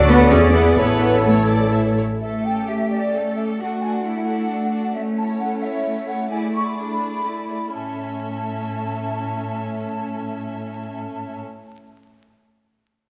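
Through a dark, reverberant scoring-stage sound with vinyl crackle, this spirited, quick classical-period excerpt in 3/4 and A major carries a violin section's vibrato melody over a smooth background violin line, an airy flute section and a focused viola section, with a clear, distant-sounding cello section up front on the bass; a lush double bass section, punchy cor anglais, very quiet clarinet and bassoon, and mellow French horn chords all drop out by 2.0 s, and the tempo slows from 4.3 to 7.7 s.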